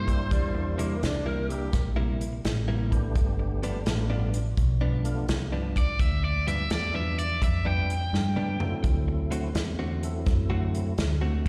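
A bright, overdriven electric guitar carries the melody of this rollicking, gritty electric blues shuffle at 84 BPM, briefly at the opening and again from 5.8 seconds, while a raspy tenor saxophone growls a short second line with scooped notes near the start. Underneath, a clean, direct-recorded electric guitar picks a compressed riff, a foam-muted fingered electric bass sits up front, and an overdriven tonewheel organ adds percussive accompaniment through a slow rotary speaker with chorus vibrato. A soul drum kit with a tight kick and a rolled-off top plays a fill at 8.1 seconds over chords moving from C7 to G7 to D7, and the band comes through a venue's PA in a small room with recital hall reverb.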